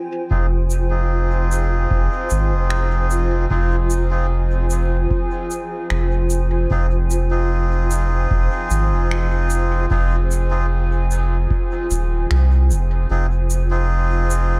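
Spacious and meditative, this ambient dub fragment rests on a blurred, evolving granular cloud pad holding sustained chords, while a reedy, breathy melodica plays filtered stabs trailing dub echo, a round, up-front sub bass anchors the low end, a deep, tape-warm electronic kick sits in the background until 11.7 s, and shaker and finger snaps with their own dub echo drift through a dark, small-room production.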